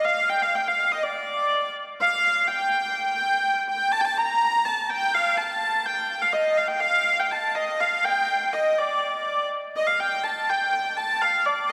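A straight 2/4 pulse at 124 BPM drives this short medieval piece, which has a driving, ancient mood. A single hurdy-gurdy plays alone throughout the 11.7 seconds, its wheel-bowed, keyed tone sitting up front with a nasal, boxy edge that stays smooth and even from D5 to Bb5. A long church reverb, ringing for 3.7 seconds, surrounds the instrument and lends the lone player the air of a church. The opening material returns after 2.0 seconds, and a new section begins at 9.7 seconds, continuing until the cut. The passage is taken from a longer piece, so it ends mid-flow.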